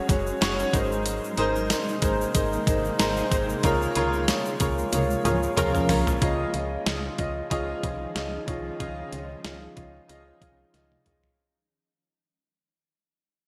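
A warm baby grand piano with analog chorus sits up front in this glossy, nostalgic 1980s-style pop piece in Db major at 93 BPM, carrying the chords over a thumpy, overdriven 12-bit drum machine with gated reverb, a punchy, round FM bass, and a shimmering, ethereal pad in the background. A grainy egg shaker adds texture until 6.2 seconds, and a dark, funky polysynth comp with chorus and digital delay enters with stabs at 5.2 seconds. The band hits an accent and drum fills lead into a fade-out from 6.2 seconds, all within a bright digital production bathed in lush hall reverb.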